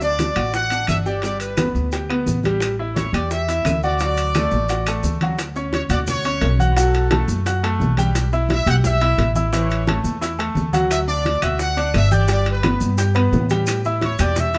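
Salsa at a brisk 174 BPM in D major, this joyful, danceable excerpt from a longer piece opens with most of the band already in motion. A bright, tight trumpet section carries the melody up front, smooth on top, while a clear, polished concert grand piano supplies accompaniment with deep bass and short sustain. The upright bass sits forward too, plucked, growly and thumpy with a dark, woody tone. Behind them, soft-handed, low-tuned congas fill the background, round bongos and ringing metal-shell timbales join at 0.2 seconds, and grainy, band-limited maracas add a mellow, vintage shimmer. Very quiet claves click in at 0.4 seconds, drop out at 5.0 seconds and return later. The harmony cycles through D, G and A before a richer Dmaj7 passage, all in light reverb.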